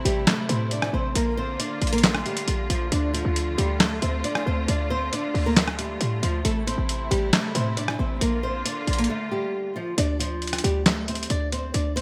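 A fingerpicked flamenco guitar carries the melody over smooth, distant bowed strings and a punchy 808-style bass, with a gritty, pitched-down drum kit arriving a fraction of a second later in this dark, melancholic trap and hip hop cut from a longer piece. The tempo sits at 136 BPM in 4/4 with a half-time feel, moving through Am, Bb and Dm in D minor. The acoustic guitar sits up front with a delay trailing its lines, while the symphonic string section holds rich sustained chords with light vibrato from deep in the mix. The tight, sine-based bass has a fast attack, a noise layer and a decaying tail, and the compressed, sampler-style kit of handclaps, hi-hat, rim click and a medium-tuned snare sounds re-recorded in a large room. A break arrives at 9.1 seconds, and the strings stop at 10.0 seconds as a new section begins on Dm. The whole mix has a bright, 1980s-style digital sheen and a moderate plate reverb.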